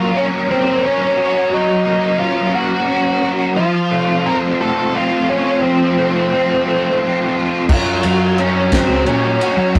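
Dark and trippy, this psychedelic rock fragment, cut from a longer piece, sways in a slow 6/8 over a Gb chord that shifts to F at 3.6 seconds and returns to Gb at 7.7 seconds. Up front, an octave-fuzz lead guitar carries the distorted, shadowy melody, while a double-tracked, overdriven electric guitar plays a picked riff through a rotary speaker. Behind them, a vintage combo organ holds buzzy, clean sustained chords quietly in the background. At 7.7 seconds a picked electric bass, direct and amped with gritty overdrive, enters together with a damped 70s drum kit with a fat snare, tight kick, and dry, rolled-off crash and ride cymbals. The whole take has the rough, saturated feel of a rehearsal-room recording, set in a wet small-room reverb.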